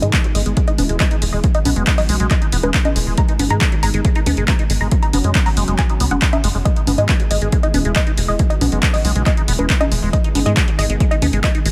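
Driving and euphoric, this excerpt of uplifting trance in a straight 4/4 cycles through a looping chord progression that settles briefly on a suspended chord midway. An overdriven, punchy electronic kick sits up front from 0.1 s, alongside an analog drum machine whose gritty congas, handclaps and hi-hat, already sounding from the start, carry the ring of a large room. Underneath, a tight sequencer bass blends sawtooth, square and triangle tones into short, decaying plucks, while a squelchy, resonant acid bass spins arpeggios through phaser, subtle chorus and delay. A detuned unison pluck with a noise layer and a moving notch carries the melody with delay, and a thick, bright pad holds sustained chords in the background, colored by chorus and a filter sweep across its whole length. Sidechain pumping breathes through the pluck, the pad and both basses, and the mix stays dry and forceful.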